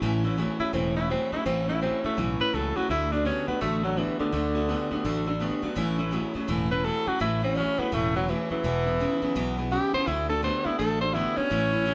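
Rock with a rowdy, upbeat mood, this short cut from a longer piece moves at 167 BPM in 4/4 with a swung eighth-note feel in A major. A breathy tenor saxophone takes the melody as an up-front solo from 0.6 seconds, its subtone delivery, light vibrato, scooped notes and punchy attack sitting above the band with a smooth top. Underneath, a picked steel-string acoustic guitar supplies bright, full-bodied dreadnought accompaniment. An electric guitar through a small old amp plays a twangy, slightly broken-up, lo-fi riff. A fretless electric bass anchors the low end with a growly, direct-amped tone. The chords move from A to D, back to A, then E and D, all captured as a band playing live in one room with light reverb and a soft, rolled-off top end.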